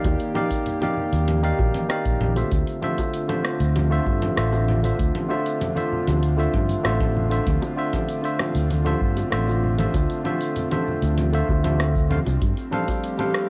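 A straight 4/4 groove at 97 BPM anchors this relaxed, wistful sunset chillout piece in D minor, built on a deep analog electronic kick and a layered deep house kit of hi-hat, rim click, shaker and congas with a small-room character. Bongos and congas played with soft hands sit very quietly beneath, adding a bright acoustic touch. Up front, a fingered electric bass gives a growly, amped low end, while a barky tine electric piano, lightly overdriven and fed through digital delay, carries the accompaniment. In the background, an airy, breathy pad with a slow attack, detuned sawtooth tone and warbling vintage chorus holds sustained chords. The harmony moves from Ebmaj7 to Dm9 at 2.5 seconds and reaches G9sus4 at 12.4 seconds, with the bass stopping at 12.5 seconds in this fragment cut from a longer piece, and the mix sits in light reverb and digital ambience.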